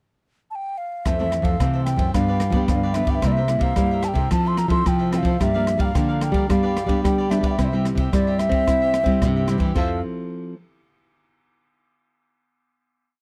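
A lively, joyful blend of samba and choro in F major, this short complete piece moves at 110 BPM in a straight 4/4. A hollow wooden flute opens alone on a pickup at 0.5 seconds, carrying a motif-based melody in period phrases with vibrato, a crisp attack and lifted highs. At 1.1 seconds the band joins: a bright cavaquinho strums in sixteenths, one nylon-string guitar plays thumb bass and syncopated plucked chords with a full-bodied classical tone, and a second fingerpicked nylon-string guitar handles a samba bass figure. An open jazz drum kit sits up front with a samba groove, using a boomy kick, rim clicks, and dark ride and crash cymbals in an airy, polished small-room sound. The harmony moves through Fmaj7, G7, C7, Gm7, G and C before settling on a final Fmaj7 chord at 9.8 seconds. The recording is dry and close, in a 1970s studio style with little reverb.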